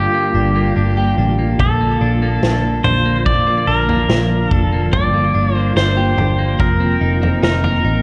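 Light reverb and a small-room ambience surround this floating, dreamy dream pop excerpt in Bb major at 72 BPM, where a bright, twangy, up-front pedal steel guitar carries the melody through tape echo over an ethereal, detuned pad of sustained chords wrapped in ensemble chorus. An electric guitar at the edge of break-up picks scooped arpeggios with subtle chorus and tape echo, while a dark, foam-muted, round picked bass anchors the low end. A vintage acoustic drum kit with a punchy kick and rolled-off top enters at 1.6 seconds, as the harmony moves from Gm7 to Bbmaj7, back to Gm7 and on to F7sus4.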